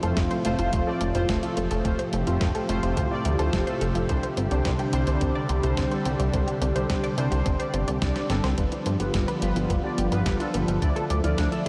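Soaked in a huge ambient reverb, this dreamy, uplifting and nostalgic synthwave passage is cut from a longer piece, built on a swirling, detuned pad with phaser and sidechain pumping, a glossy, nasal chorused synth bass up front, and bold, fat synth brass stabs with tape echo. A round analog pluck plays arpeggios in the background under a filter sweep, while a thumpy electronic kick and a sampler-style drum machine with a medium-tuned snare and hi-hat keep a straight pulse, capped by a drum fill at 8.2 seconds. At 8.6 seconds a clean, picked electric guitar enters in the background with a riff, colored by ensemble chorus, tape echo and its own filter sweep.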